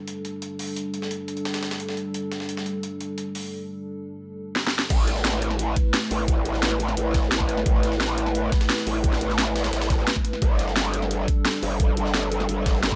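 A straight, gritty breakbeat of hi-hat and medium-tuned snare runs under a deep, detuned analog pad whose sustained chords pump against the groove, setting a mechanical, aggressive mood for this dark technical drum and bass cut. After a drum fill at 4.6 seconds, the drop lands at 4.9 seconds with an up-front knocking electronic kick, a layered kit with cracking snare, bright hats and crash, and a saturated growl bass that wobbles low through a formant filter. The mix is dry, with overdrive on all three drum parts.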